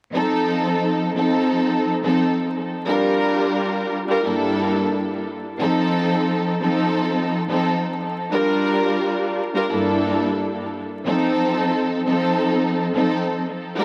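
Vinyl crackle and a heavy wash of echo surround this short hip hop excerpt, set in a small room with light reverb. A lone studio string section carries the whole piece at 88 BPM in 4/4, with a 16th-note swing that gives the groove a gritty, tough edge. The bowed ensemble sits close and up front, its tone warm, woody and lush with vibrato, shaped by high-pass and low-pass filtering and an analog delay that trails behind it. The harmony circles through F7, Gm7 and Gm69, returning to F7 at 5.6 seconds before a new section begins at 11.0 seconds on F7 again. The strings play alone from the opening to the cut at 13.8 seconds.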